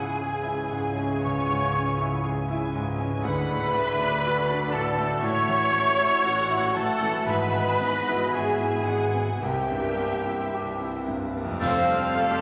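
Moving in a free, rubato 4/4, this cinematic film-score excerpt feels tender and hopeful as it drifts through chords from C#m to D, A6, Eadd9/G# and C7 before settling on Fadd9. Muted violin sections carry the veiled melody and a lush second line above it, joined by a distant silver flute with expressive vibrato, while a clear concert grand piano with deep bass and an up-front, rich muted viola section supply the accompaniment. A dark, roomy French horn section holds soft sustained chords, a very quiet concert harp rings out arpeggios, and muted cello and double bass sections anchor the low end. From 7.3 seconds a cymbal swell, clash cymbals and concert bass drum add bright, dry color in the background, and at 11.6 seconds a closing accent brings in a solo muted cello on the melody, a vintage-toned bright clarinet and a smooth-topped oboe on second lines, and timpani struck with medium mallets. 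The whole ensemble sits in a wet scoring-stage reverb that gives the orchestra a glowing sense of space.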